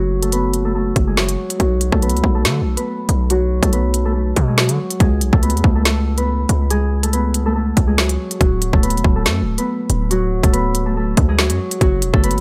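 Drill hip hop in F# minor at 141 BPM with a half-time feel and a cold, ominous mood, cut from a longer piece, where a mellow, ringing fingerpicked Celtic harp carries the melody through a low-pass filter sweep and tape echo over chords moving from F#madd9 through B5, C#7(no3) and D, while a heavy, saturated 808-style bass with a noisy edge hits hard and decays beneath a drill kit that enters at 0.2 seconds with a hard-clipped kick, woody snare and crisp hats, all sitting up front in a dry mix.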